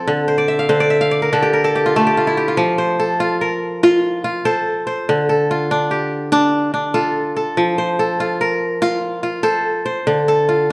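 Set in a 12/8 metre with a straight feel, this short excerpt of West African traditional music has a hypnotic, warm mood, carried by a solo kora that is bright, fingerpicked and crisply ringing, placed up front in a reverberant recital hall. The kora opens with a fill from 0.3 seconds before settling at 2.6 seconds into a passage that alternates between F major and D minor chords, spanning from low D3 up to F5.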